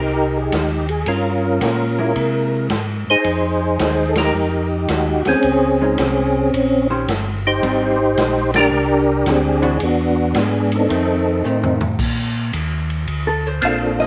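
Swinging at 110 BPM in 4/4, this bluesy, greasy soul jazz organ trio excerpt rides on a distant, roomy big-band drum kit that enters at 0.5 s, with a boomy kick, band accents and a fill just before 12.0 s. An up-front tonewheel organ carries the melody with third-harmonic percussion, chorus vibrato and a slow rotary speaker, while a second, mellow and round organ voice holds down the bass through rich chords such as Abmaj9, C7alt and Fm11. A dark, compressed hollow-body electric guitar comps from 2.0 s and takes a clean, picked solo from 12.0 s over Bbmaj7, all set in a plate reverb with small-room ambience.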